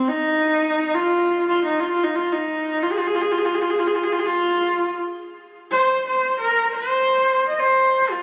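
Mongolian traditional music with a windswept, solemn mood, carried by a single horsehead fiddle playing solo for the whole 8.2 seconds of this fragment cut from a longer piece. The bowed horsehair strings sound clear and focused with a husky edge, sitting up front in the mix, and the playing is coloured by vibrato and portamento. A huge ambient reverb with a long tail surrounds the fiddle, and the phone recording made in the room adds studio reverb and compression.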